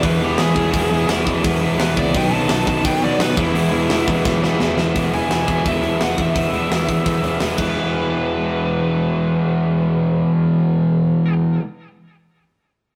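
A biting, overdriven lead guitar opens this rebellious, upbeat punk rock excerpt with a solo over the full band, its digital delay trailing behind. An up-front overdriven guitar riff and a brighter, compressed distorted guitar in the background drive underneath, with a punchy, fuzz-laden picked bass and a tight, airy drum kit with bright cymbals. The drums play a fill from 4.2 to 4.9 seconds and drop out at 7.7 seconds, leaving the guitars and bass in a rough, saturated rehearsal-room sound with light reverb.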